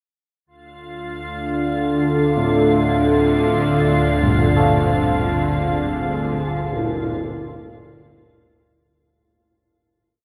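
An icy, crystalline glass pad opens this desolate, unsettling dark ambient drone in D minor at 57 BPM, joined at 1.3 seconds by a tense, string-like bowed drone with vibrato and phaser and moments later by a deep, moody analog pad holding chords that shift from Dm to Fm before fading out, while mellow bronze carillon bells ring in slow, drifting arpeggio loops through tape echo until 10.2 seconds, distant, slow tam-tam hits sound at 6.7 seconds, and a huge, wet reverb cloaks the whole piece.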